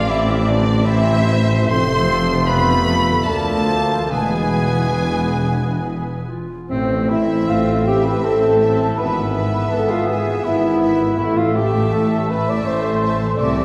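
Elegiac and melancholic, this slow romantic orchestral movement in A minor moves in a rubato 3/4 at roughly 66-85 BPM, cut from a longer piece. Bowed chamber violins carry the melody with focused vibrato, while a second violin line, a very quiet airy flute ensemble, a present cor anglais and, from 1.7 s, a distant clarinet weave secondary lines around it. Distant violas and a background bassoon fill the inner accompaniment, and a mellow French horn section, the most prominent of the held parts, sustains chords with a very quiet, tight trombone section. A very quiet, thumb-plucked concert harp rings out arpeggios, and expressive cellos, double basses and a very quiet tuba anchor the low end. The harmony moves from A minor through F, B-flat over D and E before returning home by way of E over G-sharp, all bathed in a roomy concert hall reverb.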